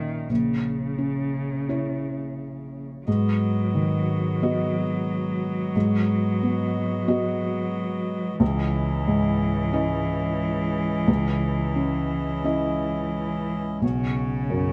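A soft, intimate felt-muted upright piano and a single bowed cello with focused vibrato and a smooth top open this fragile, longing neoclassical excerpt with rubato, the cello carrying a second line over chords moving from A#dim through G#m7 and C#madd9 to Bsus2, before a reedy, breathing hand-pumped harmonium with a boxy small-room sound enters at 3.1 seconds with sustained chords, within moderate studio reverb and a dark production.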